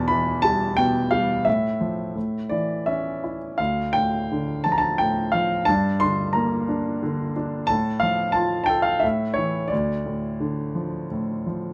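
A warm, up-front grand piano plays alone throughout this brooding, bittersweet classical fragment in 3/4, its lyrical line moving with uneven, rubato beats across a range from D2 to C6, over chords that drift from Em through Fmaj7/A and A to Dm, then on through Gm, Fadd9/A and A to settle again on Dm, all in a light reverb.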